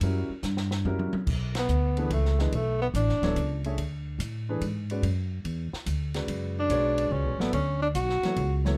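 A breathy tenor saxophone carries the melody in a mellow subtone, up front in the mix with light vibrato and scooped notes, playing two short solo phrases, the first beginning at 1.6 seconds. This is a spiritual, hypnotic modal jazz piece in B dorian, moving at 144 BPM in a swung 3/4. An upright bass plays pizzicato, woody and growly on steel strings, sitting up front beside the horn, while a warm grand piano supplies natural-sounding accompaniment. A compact cocktail drum kit, acoustic and dry with dark cymbals, a high-tuned snare and a tight kick, plays a fill that leads into a band accent at 1.5 seconds, shortly after the harmony settles from F#7b9 onto Bm9 at 1.3 seconds. Light reverb and a dark, warm production wrap this excerpt, which is cut from a longer piece.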